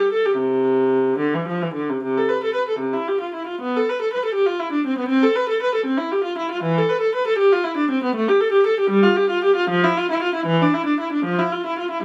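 The recording has a light reverb, placing a single bowed viola up front yet with a slightly distant air. This is a classical, baroque-style suite movement for unaccompanied viola in C major, lifted from a longer piece and lasting 12.0 seconds. Its mood is radiant and dance-like, moving in 6/8 at around 73-81 BPM counted in dotted quarters, with a flexible, rubato feel. The viola's tone is rich, shaped by vibrato, soft attacks and expressive portamento as it ranges from C3 to B4. Tuned to A4 = 445 Hz, the lone player carries the entire excerpt from start to finish.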